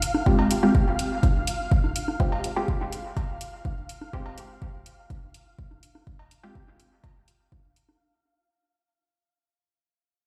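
A straight 4/4 pulse at 124 BPM drives this hypnotic, hazy dub techno fragment in F minor, where a deep, overdriven electronic kick sits up front beside a layered electronic hi-hat, congas and cowbell pump and trail dub echo, a muted, detuned sawtooth chord stab on Fmadd9 enters at 0.3 seconds, colored by phaser and cassette tape, and a grainy, flickering granular texture hovers around F5 as the passage fades out, all heard through a big sound system in a bare stone room.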